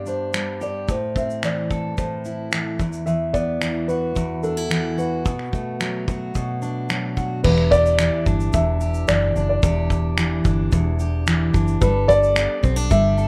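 A dark, woody upright piano carries a tender, wistful melody over a full-bodied fingerpicked steel-string acoustic guitar, with a loose, muffled indie drum kit of finger snaps, shaker, punchy kick and dark crash cymbal joining at 0.1 seconds. This acoustic pop excerpt moves at 110 BPM in E minor through G, Am, Esus2 and Bm7, and the piano's audible action noise and long sustain give it an intimate feel. At 7.4 seconds a round, foam-muted vintage electric bass enters as the harmony shifts to Em7 and Gadd9, all set in a small room with the rough character of a home demo.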